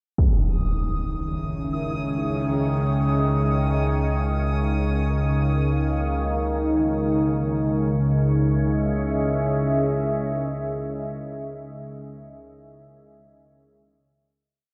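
Steeped in a cavernous cathedral reverb, this brief, unsettling and desolate dark ambient drone piece in C# minor drifts in free time, opening on a huge, bright impact at 0.2 seconds before a bubbling, resonant sawtooth texture with random filter steps and a held high note enters at 0.5 seconds. A deep, moody, detuned pad of slowly shifting chords, moving from C# minor to D# and back, follows at 1.3 seconds and is joined by a calm, organ-like low drone up front at 1.7 seconds, before the piece settles on a final sustained chord at 7.5 seconds.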